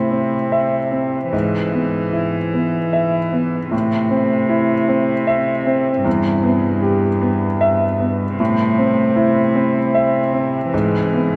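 This neoclassical piano and strings piece is a melancholic, fragile fragment cut from a longer work, moving in a loose, rubato 6/8. A concert grand piano carries the accompaniment across its full 11.4 seconds, up front with a clear, intimate tone, deep bass and audible action noise. Beneath it, a single bowed cello adds a second line in its low register, played sul tasto with a soft attack; its pure, floating sound sits a little lower in the mix than the keyboard. The harmony circles between Am and E/G#, with a turn to Em before it returns home. A long cathedral reverb fills the church or concert hall setting, letting each phrase hang in the air.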